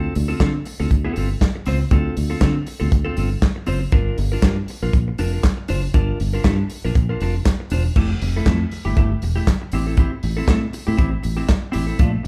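Danceable and glamorous, this disco excerpt moves at 119 BPM in D minor, with the band playing live in one room under light reverb as the chords pass from Dm7 and Gm7 into Fmaj9 at 8.0 seconds and Am7 at 9.7 seconds. The dry, dark soul drum kit sits up front with a tight kick, medium-tuned snare, handclaps, hi-hat, crash and dark cymbals, beside a round, foam-muted fingered electric bass, also up front. A clean, picked electric guitar, compressed and scooped, supplies the accompaniment lower in the mix.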